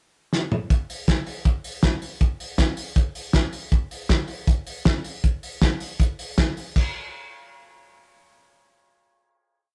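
Youthful and nostalgic, this complete indie pop piece at 158 BPM in a straight 4/4 is carried by a lone cloth-damped, thuddy acoustic drum kit placed up front in a small room with moderate studio reverb and rough rehearsal-room tube saturation; a drum fill at 0.3 seconds leads into a dance-floor indie beat of fat snare, tight kick, toms, dark crash and off-beat open hi-hats with a rolled-off top, before the kit stops at 6.8 seconds as the final hit section begins.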